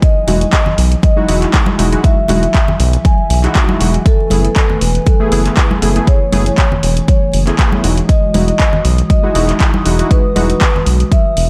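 A mellow vibraphone struck with soft mallets leads this smooth, late-night deep house excerpt at 119 BPM, its close, ringing melody trailing dub echo over a dark, moody analog pad that breathes with sidechain pumping and chorus in the background. Underneath, a deep layered electronic kick sits up front, joined by a punchy analog drum machine playing handclaps and hi-hat with the sound of a large room, and a light 16th-note swing. From 0.3 seconds a round, sustained analog bass enters alongside detuned, chorused analog key stabs that decay into dub echo and move with a filter sweep, while bright, dry congas tick along in the background. The harmony settles on Emaj9, moves to F#m11 at 4.1 seconds, and returns to Emaj9, all wrapped in a persistent bed of vinyl crackle.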